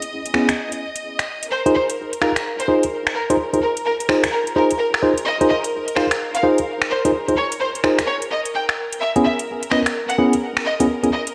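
Smooth, vibrato-laden violin-section chords and a skippy, tape-toned two-step garage kit of finger snaps and metallic hi-hats open this moody UK garage excerpt at 128 BPM in F minor, joined at 0.3 s by worn, slightly out-of-tune tine electric piano stabs through a low-pass filter and diffuse delay, and at 1.5 s by a biting, intense violin-section melody carrying 12-bit sampler grit and its own diffuse delay, the whole mix dreamy and soaked in plate reverb over vinyl crackle as Fm7 gives way to Dbm7.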